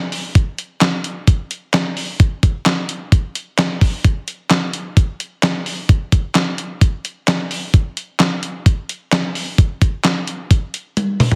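A pop drum groove at 130 BPM in a straight 4/4, nocturnal and driving in mood, cut from a longer piece. A dusty, soul-flavoured sampler-style kit carries the whole thing on its own from 0.1 seconds, mixing kick drum, snare, hi-hat, toms and handclaps. The kit sits up front with a gritty, compressed character, a thumpy kick and a fat snare at natural pitch. A drum fill closes the passage at 11.0 seconds. Moderate digital room reverb and heavy multiband compression give the recording a squeezed, radio-like sound.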